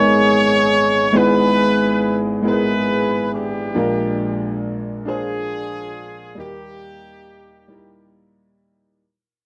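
A dry, close recording with a 1970s studio character and light reverb carries this fervent, soulful gospel excerpt in a straight 6/8, fading out across its whole length. A tight, up-front horn section with light vibrato and a pop-style polish carries the melody until 8.1 seconds. A warm, boxy baby grand piano accompanies it and carries on alone to the end at 9.0 seconds.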